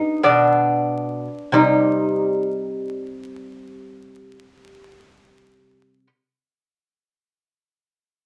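This classical, baroque-style lute dance is an introspective and grave fragment cut from a longer piece, set in C minor at a slow 46 BPM in 4/4 with a free, rubato feel. The solo lute plays from 0.0 to 6.1 seconds, fingerpicked on gut strings that are doubled in courses, some in octaves, giving a delicate, warm tone that sits up front. Its range spans B2 to Eb4, keeping the music in a dark, low-middle register. The opening passage slows down over a rootless G harmony before settling onto C minor at 1.5 seconds, where the second section begins. A studio reverb adds a soft, roomy halo, while a layer of vinyl crackle lends the recording an aged, intimate character.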